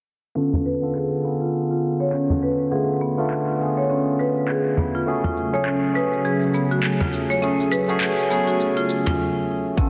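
A barky, clean tine electric piano sits up front with sidechain pumping and tape echo, while a bright, woody marimba played with hard mallets spins arpeggios in this mystical, meditative organic downtempo cut from a longer piece, set at 102 BPM in 4/4 with a swung sixteenth feel in C# phrygian dominant. Electronic shaker and handclaps and a soft-handed, close and dry frame drum keep the groove under a filter sweep that also touches the marimba, and a smooth, detuned sawtooth analog pad with chorus enters at 5.1 seconds as the chords move from C#7b9b13 to F#madd9/C#. After a break at 9.2 seconds, a deep, up-front electronic kick lands at 9.8 seconds, all set in a lush hall reverb with a dense, heavily limited master.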